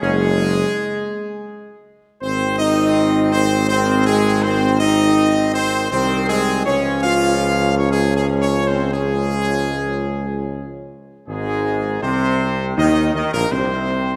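Regal and majestic, this classical ceremonial fanfare moves in a stately triple metre with a straight feel, and it is a short passage cut from a longer piece. A bright, close-miked trumpet section sits up front and carries the melody, while a mellow French horn section holds sustained chords further back in the ensemble. A tight trombone section with a vintage, warm colour adds more sustained chords beneath them, and a solo tuba, up front with a smooth top and light vibrato, anchors the bass. All four parts play together from the opening to the close at 14.2 seconds, with the harmony moving from Gbsus2 through Ab and Db. A new section begins at 11.3 seconds, and the whole passage is bathed in the generous, wet reverb of a scoring stage.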